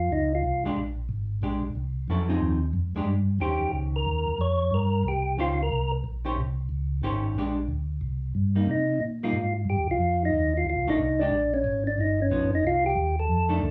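The recording has a wet studio ambience with a short decay, the trio heard playing live together in one room and every part sitting up front. This is swinging, greasy soul jazz at a brisk 182 BPM in 4/4, with a swing feel on the eighth notes and an excerpt cut from a longer piece. A mellow, round tonewheel organ carries the bass throughout, its dark, clean tone colored by chorus vibrato and a slow rotary speaker. A second tonewheel organ, percussive with third-harmonic percussion and also turning through a slow rotary speaker, states the melody in separate phrases, playing at the very start, again from 3.4 to 5.9 seconds, and then from 8.7 seconds to the end. A dark, clean, picked hollow-body electric guitar comes in at 0.7 seconds to comp beneath the organs. The harmony moves through rich extended chords such as Eb13, Bb13 and Fm69 before a turnaround of F13, Bb7#9 and G7alt resolves to C minor.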